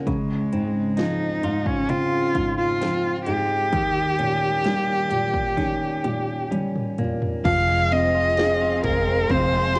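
A soft, mellow felt-muted upright piano with audible action noise and a bright, twangy clean electric guitar playing arpeggios open this melancholic, heartbroken pop ballad in F minor at 65 BPM, joined almost at once by a rich, up-front bowed cello carrying the vibrato melody over Dbmaj7 and Eb7 harmonies and by an overdriven electronic house drum kit with punchy kick, cracking snare and metallic hats, whose fill from 5.6 s leads into the arrival of F minor at 7.5 s, where a round, foam-muted vintage electric bass settles on a low F just after a lush string section with portamento enters in the background, with cassette-tape colour on every part but the bass and light reverb throughout this excerpt from a longer piece.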